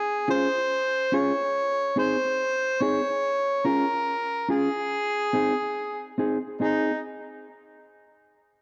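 Reggae with a laid-back, sunny mood and a gently swung sixteenth-note feel, cut from a longer piece. A mellow, vintage-toned harmonica carries the melody from the opening, playing up front in a pop style with scooped notes and a dub echo trailing its phrases. Just behind it, from 0.3 seconds, a dark, clean electric guitar plays fingered accompaniment, sitting up front with spring reverb and its own dub echo. The harmony rocks between Db and Ab, and the opening section gives way to a new section at 6.6 seconds. The sound is that of a dry, close 1970s-style studio recording with only a light touch of room reverb.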